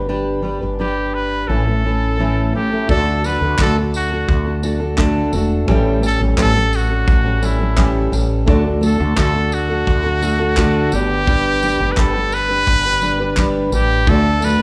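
Set in the moderate reverb of a recital hall, this carefree, heartfelt acoustic pop passage opens on an up-front fingerpicked dreadnought guitar with fresh strings and audible finger squeak, underpinned by a round, dark fretless electric bass. A bright, present trumpet carries the melody from 0.8 seconds with light vibrato. At 2.9 seconds a punchy studio drum kit adds kick, handclaps and tambourine, while a very quiet felt-muted upright piano brings a soft, vintage touch with audible action noise.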